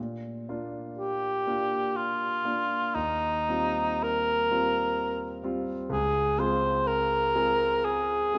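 A warm cor anglais with light vibrato and a soft attack carries the melody from 1.0 s over a clear concert grand piano with deep bass, both up front in a wet recital hall, in this luminous, pastoral impressionist classical duo in 3/4 at a rubato 54-64 BPM in Bb mixolydian, cut from a longer piece, its harmony drifting from Bb6 to Eb69 and then Dbmaj7 at 5.9 s.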